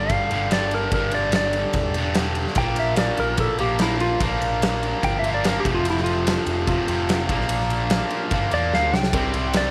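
Driving and swaggering, this short classic rock excerpt moves at 146 BPM in a straight 4/4, built over chords moving from G5 through Bb, F and back to Bb before landing on C. A twangy, clean lap steel guitar carries the melody as a slide solo throughout, its compressed, fingered tone given a slapback echo. Beneath it, an up-front distorted electric guitar drives a bright, picked riff, while a dark, round overdriven bass anchors the low end. A huge arena drum kit with a fat snare, punchy kick and bright cymbals on the ride pounds away, breaking into a fill between 8.7 and 9.1 seconds. A very quiet, gritty tonewheel organ with key click and slow rotary speaker slips in with sustained chords at 2.6 seconds, and at 9.1 seconds a biting overdriven guitar in the background and a faint metallic cowbell join for the final moments, all set in a light, small-room reverb.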